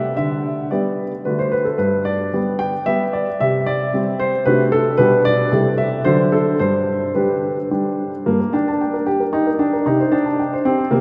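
Cheerful and elegant, this short excerpt from a classical-period piano sonatina moves at 112 BPM in a straight 3/4, set in G major. A solo baby grand piano carries everything from 0.0 to 11.0 seconds, ranging from G2 up to A5 with a natural tone, short sustain and an up-front presence. The harmony begins on G/D and moves through D, C5 and D7/C before settling back on G through Am7/C and D7 around 6.6 seconds. At 8.3 seconds the second section turns to G minor, a shadowed shift before reaching C5 near 9.9 seconds. The recording sits in a vast, echoing space, with a wet cathedral reverb of 4.9 seconds giving the warm piano a long, resonant halo.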